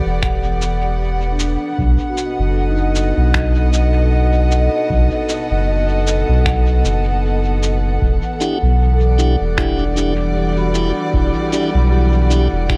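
Meditative and deep, this ambient dub excerpt moves at 77 BPM in E minor with a lightly swung 4/4 feel, circling between Em7 and B7 over a round, soft sub bass placed up front and a dry, analog electronic kick sitting in the background. A dark chamber string section holds intimate, bowed sustained chords with light vibrato, while a ringing, metallic vibraphone plays arpeggios through a low-pass filter sweep and dub echo, and a glassy harmonics texture drifts behind with chorus and its own reverb. Muffled, pitched-down electronic finger snaps and cabasa carry dub echo, and at 8.4 seconds a piping, lightly overdriven tonewheel organ joins with key-clicked stabs through a stopped rotary speaker and dub echo, all set in a light reverb.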